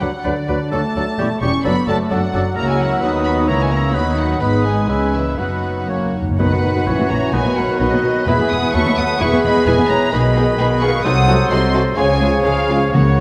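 Cheerful and graceful, this quick classical-period movement for symphony orchestra moves at 129 BPM in 2/4 with a rubato feel, set in B major and cut from a longer piece. The violin section carries the melody with a soft attack and floating sul tasto tone, while a second violin section, an oboe with light vibrato, a mellow clarinet and a small, airy flute group weave second lines around it. A mellow bassoon and a sul tasto viola section fill in the accompaniment, the French horn section holds tight sustained chords, and a dark cello section and rich, smooth-topped double bass section anchor the bass. Timpani with soft mallets and a round tone enter only briefly, with a fill from 5.9 to 6.4 s that closes the first section and a brief return at 12.9 s. The harmony moves from B major into a second section that turns toward E and passes through a diminished seventh before settling on C#. A moderate scoring-stage reverb gives the ensemble a gentle sense of space.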